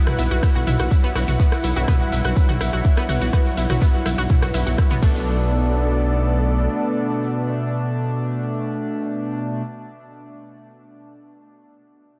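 A driving, straight 4/4 pulse at 124 BPM carries this dramatic melodic techno excerpt in B minor, where a punchy, up-front electronic kick and a background house kit with metallic hats, rim clicks, toms and crash join a grainy, distant shekere until about 5.1 seconds, while a menacing detuned saw bass swells underneath, a lush warbling unison pluck spins bright arpeggios through diffuse delay, an edgy sync-sweep polysynth fires nasal stabs, a smooth vintage analog pad holds chorused chords pumping against the kick, and a very quiet, moody ambient pad adds a deep ring-modulated haze as the harmony moves from Emadd9/B to Bm7 at 5.0 seconds.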